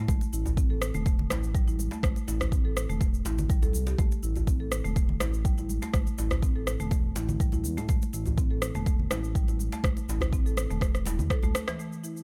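A small-room ambience surrounds this warm, hypnotic afro house groove, cut from a longer piece, moving at 123 BPM in straight 4/4 in A minor with tuning set to A4 = 435 Hz. A deep, overdriven electronic kick sits up front, joined by an overdriven electronic cabasa and rim click re-recorded in a small room, while acoustic congas struck with hard hands and a medium-tuned djembe sit in the background. A smooth synth bass that blends sawtooth and triangle tones with ring modulation, vibrato and a fast attack holds sustained notes between E1 and A2, pumping under sidechain compression. Above it, a marimba played with soft mallets on padauk bars spins woody, round arpeggios from E3 to A4, close-miked and dry, shaped by sidechain pumping, a low-pass filter and digital delay. The harmony rests on an A5 chord from the start, and a drum fill runs from 10.8 to 11.8 seconds, with the cabasa and rim click lasting until 12.2 seconds.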